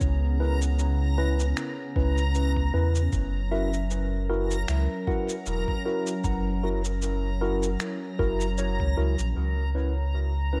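A deep, round dub sub bass sits up front with tube-saturated weight, anchoring this spacious, peaceful ambient dub piece at 77 BPM in 4/4, with a gentle 16th-note swing in F# mixolydian. Above it, a warbly tape-like pad holds sustained chords with a nostalgic, lo-fi, detuned character, moving from C#m7 to F#7 at 3.1 seconds and back to C#m7, where a filter sweep passes over the pad at 9.4 seconds. A mellow tine electric piano enters at 0.4 seconds with clean stabs carried by dub echo, while a soft FM synth bell plays pure, decaying arpeggios in the background through chorus, phaser, tremolo and dub echo. A reversed, granular swelling texture adds a bright, dreamy shimmer on a high A#5. A muffled, thumpy electronic kick and sampler-style shaker and finger snaps with dub echo keep a compressed, tape-warm pulse, the kick stopping at 8.9 seconds in this short cut from a longer piece, all set in light digital ambience.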